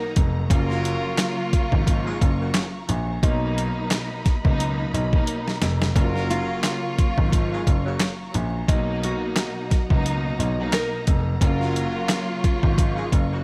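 A gritty, pitched-down sampler-style drum kit sits up front in this soulful, confident boom-bap hip-hop excerpt, pairing a thumpy kick and medium-tuned snare with hi-hat and handclaps in a compressed, swung groove, and breaking into a short fill at 5.3 seconds. A smooth, vintage grand piano carries the low bass line with short sustain, while a lush symphonic string section plays bowed, vibrato-rich accompaniment through a cassette-tape coloring. Further back, a dark, expressive studio string section holds sustained chords, and a mellow, tight jazz-style horn section adds stabs with light vibrato and tape echo. A bright, fingerpicked classical nylon-string guitar carries the melody in the background from 6.3 to 11.0 seconds, also touched with tape echo. The harmony alternates between Bmaj7 and F#maj7 over a constant bed of vinyl crackle.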